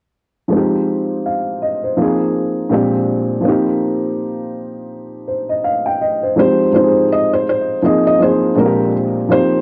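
A home cassette recording gives this short cut a lo-fi surface, with moderate spring reverb and a small room's ambience around it. It is a cosy, nostalgic hip hop sketch in 4/4 with a swung sixteenth-note feel. A dark upright piano carries the accompaniment from 0.5 seconds. Its woody, boxy tone sits up front, softened by a low-pass filter and tape coloring, and its chords move from Fm9 through Bb9sus4 and Bb13 to Eb69. At 6.4 seconds the harmony returns to Fm9 and a felt-muted upright piano enters with a short melody in a narrow upper range. That melody is soft and intimate, with audible action noise, analog delay and the same filtered cassette treatment. Both pianos play together until the cut ends at 9.6 seconds.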